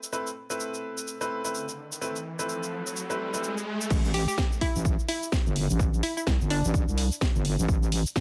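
This bouncy, aggressive bass house excerpt at 127 BPM in A minor opens on a swung house drum kit of cabasa, hi-hat, crash and a cracking snare, overdriven and re-recorded in a large room. Clear, worn grand piano stabs sit up front over an Amadd9 chord, pumping with sidechain and trailed by delay. An electronic riser enters at 1.6 seconds and leads into the drop at 3.9 seconds, where the harmony settles on A5. There a heavy, dark wobble bass takes the low end, blending square and sine tones with chorus, overdrive and sidechain pumping, alongside a punchy, overdriven electronic kick placed up front. Just after, a hollow, detuned square pluck carries a short melody until 7.0 seconds, its bright tone shaped by ring modulation, a filter sweep, chorus and delay, all within a light reverb.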